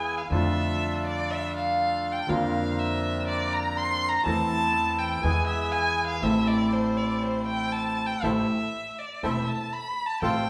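Set at 121 BPM in 4/4 but played with a free, rubato pulse, this tango in A minor feels passionate and playful, and it is cut from a longer piece. A warm, bowed violin carries the second line and takes the solo throughout, its vibrato and portamento giving each phrase an expressive, singing edge. Beneath it a clear upright piano supplies the accompaniment with an intimate, polished tone, its action noise audible. A reedy bandoneon with a boxy colour adds stabs, and a dark, thumpy upright bass on gut strings is plucked pizzicato in the low register. The band plays live in one room, and a lush large-studio reverb wraps the sound as the harmony moves from F6 through Bbadd9/F and Am/E to E before settling on Am at 6.2 seconds.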